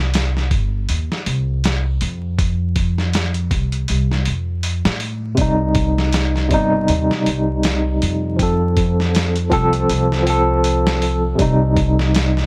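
A slow 80 BPM groove in 4/4 with a lightly swung 16th-note feel anchors this dark, brooding trip hop piece in C dorian. The dusty, sampler-style drum kit enters at 0.1 seconds with a thumpy kick, a medium-tuned snare and hi-hat, sounding compressed and overdriven, as if re-recorded in a small room. Beneath it, a woody pizzicato upright bass on steel strings sits up front from the very start, ranging from G1 to A2 with a touch of tube saturation. At 5.3 seconds a barky, overdriven tine electric piano joins through a combo amp, its fast tremolo and tape echo adding a gritty edge as it plays accompaniment between C3 and A4. The harmony moves from a C5 power chord to F, then alternates between C minor and F. The mix is dry and close, with vinyl crackle laid over the top, and the clip is cut from a longer piece.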